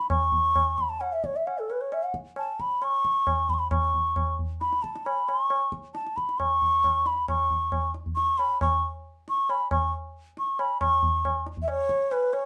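A mellow bamboo bansuri leads this Hindustani classical excerpt, carrying the melody up front from the first moment with an airy tone, vibrato, a crisp attack and lifted highs. It moves in raga Malkauns on C#, ranging from A4 up to C#6, and the mood is meditative and full of longing. A high-tuned tabla enters at 0.1 seconds, sitting lower in the balance with a close, dry sound and a short ring. The pulse is a straight 4/4 around 135 BPM, and the tempo gradually speeds up across the whole clip, with a new section arriving at 10.8 seconds. The pair sound as if playing live together in a small room with a moderate touch of reverb, tuned slightly below standard pitch to A4 = 436 Hz.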